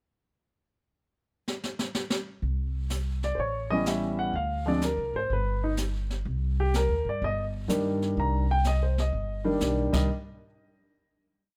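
Moody and late-night, this complete jazz piano trio piece swings at 125 BPM in C minor. A small-room brush kit with sweeps on a high-tuned snare and a boomy kick opens with a fill at 1.5 seconds, before a woody, pizzicato upright bass enters at 2.4 seconds in a two-feel. A polished grand piano with long sustain and plate reverb arrives at 3.2 seconds, playing a returning bebop-style theme over syncopated, rootless comping through A7, Dm7b5, G and Cm9, all captured up front with close, detailed microphones and light room reverb before a final hit.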